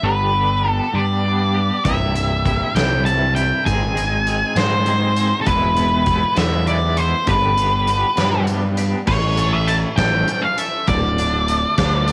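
A dark, up-front octave-fuzz lead guitar carries the distorted melody over a growly, overdriven fingered bass and a clean, twangy electric guitar playing picked arpeggios through tremolo and cassette tape, while a big rock drum kit with a punchy kick and a rolled-off top enters at 1.9 s, in this cathartic, bittersweet quiet-loud alternative rock piece at 66 BPM in 6/8 that moves through G, C, Ab and E before reaching A and D5, heard in small-room ambience on a home cassette recording and cut from a longer piece.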